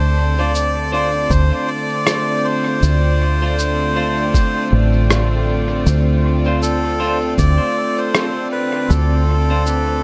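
A swung 79 BPM groove in 4/4, with swing on the sixteenths, drives this hazy, spacious ambient dub fragment in D minor, resting on a single Dm7 chord. A muffled, pitched-down kick thumps from 1.3 s to 7.6 s, alongside a compressed cabasa and rim click that carry dub echo, and a round, punchy fingered bass sits up front. Bright bowed chamber strings hold sustained chords while a reedy, breathy melodica carries the melody with dub echo; in the background a clean picked guitar adds gritty, echoing stabs and a bubbling, detuned sawtooth texture with resonant random filter steps, chorus and reverb drifts, the mix framed in light digital ambience.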